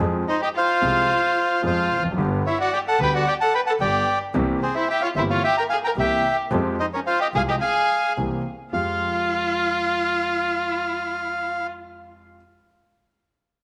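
Tense and sultry, this tango fragment, cut from a longer piece, moves at 110 BPM in 4/4 with a rubato feel in F minor. A warm concert grand piano carries the accompaniment from the start, its deep bass anchoring harmonies that move from Fm through G and C7 to Fmadd9. Beneath it, a bowed double bass sounds clear, nasal and earthy with light vibrato, and it drops out at 9.0 s. The bandoneon takes the melody from 0.3 s, reedy, dark and up front. A bowed violin adds an expressive second line with vibrato and portamento, its tone at once distant and forward. The ensemble sits in a moderate echo-chamber reverb with studio ambience, and the piano rings on alone until 12.4 s.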